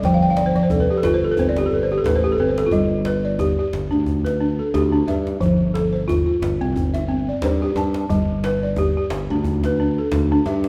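West African traditional string and xylophone music with a warm, hypnotic mood, moving at 89 BPM in 4/4 with a gentle sixteenth-note swing in G mixolydian, cut from a longer piece. An up-front balafon with a woody, buzzing, dark tone from soft rubber mallets plays arpeggios throughout, opening with a fill over the first 2.7 seconds before the music settles into a new section over a G-rooted chord progression. A bright, punchy fingered electric bass and a deep, compressed djembe with metal rattles and hard hands sit beneath it, all set in the lush reverb of a recital hall.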